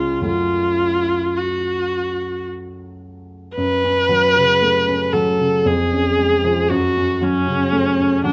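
Yearning and solemn, this romantic classical duo for viola and grand piano unfolds in F# minor at a slow 53-59 BPM in 3/4, with a flexible rubato feel and tuning set to A4 = 436 Hz. Up front, the bowed solo viola carries the melody between C#4 and B4 with a focused, vibrato-rich tone and a smooth top, while the dark, mellow concert grand supplies accompaniment below, reaching into a deep bass and moving from F#m to C#/E# at 5.7 s before returning to F#m. Close, detailed microphones capture both players naturally within a moderate recital hall reverb across this short excerpt from a longer piece.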